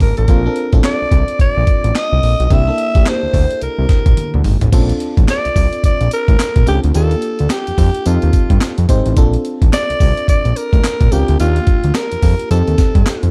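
A gritty, pitched-up breakbeat kit with a thumpy kick, handclaps and tambourine swings its 16ths at 108 BPM in this flirty, bouncy new jack swing R&B excerpt in Bb major, where a fat, detuned sawtooth analog bass with a filter sweep sits up front beneath a glassy, bell-like FM electric piano with chorus, while a raspy, growling alto saxophone takes a jazz-style solo with scooped notes, a drum fill at 4.2 seconds opening onto lush Bbmaj9, Ebmaj9 and F9 changes in a dark, dry production.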